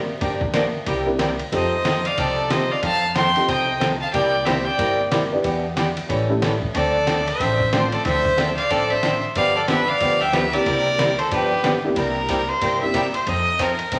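A woody upright bass opens this cheerful, swinging western swing excerpt at 184 BPM in C mixolydian, joined at 0.2 s by a boxy picked acoustic guitar and a gritty, pitched-down sampler-style drum kit of thumpy kick, snare, hi-hat and ride, then a jangly, detuned honky-tonk upright piano and two distant fiddles, the biting, nasal lead up front over a clear second line, before the lead fiddle takes a solo at 12.0 s, all bathed in large studio reverb and vinyl crackle.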